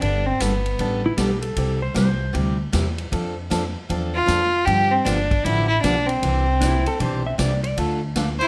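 Western swing country at 155 BPM in C major, this short cut from a longer piece has a playful, swinging feel with a 64% swing on the eighth notes. A dark, woody fiddle carries the melody up front with light vibrato, sounding briefly at the start and returning from 4.1 seconds, while a clean, compressed lap steel guitar adds a second line with slide and volume swells around 1.1 and 6.6 seconds. Underneath, a full-bodied picked dreadnought acoustic guitar with fresh strings supplies accompaniment, and a thumpy gut-string upright bass played pizzicato anchors the low end. A swinging big-band drum kit sits low in the mix with a punchy kick, medium-tuned snare, hi-hat and ride cymbal, heard in a big, natural room. The chords move from Gadd9 through C, F6 and G7 to Cadd9 and Dm, all within a moderate club reverb, and a clear, focused fiddle touches a single high note at the very end.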